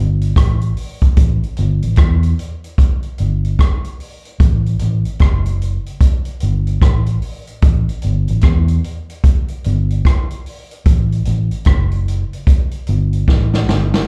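Uplifting and sunny, this roots reggae excerpt at 74 BPM rolls on a swung sixteenth-note feel, with a dark, round, foam-muted fingered electric bass and a natural-sounding vintage drum kit of hi-hat, punchy kick, rim click and medium-tuned snare both placed up front, heard as a live gig through the venue's PA with a touch of club reverb, before a drum fill closes the passage from 13.3 to 14.1 seconds.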